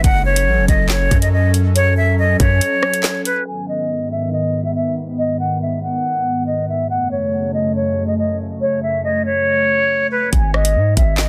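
A half-time drill groove at 140 BPM opens this cold, dark hip hop piece, with an up-front electronic kit of knocking kick, woody snare, metallic hats, handclaps and rim clicks over a punchy, sine-heavy 808 bass that drops away at 2.6 seconds for a short break. From the start, a close-miked, breathy silver concert flute with low-pass filtering and digital delay carries an expressive melody in G# phrygian over an airy, nasal, detuned pad with chorus, moving between F#m and G#m, and from 3.5 seconds a filter sweep shades the dense, dry, heavily limited mix. The drums and 808 return at 10.3 seconds on a G#5 chord.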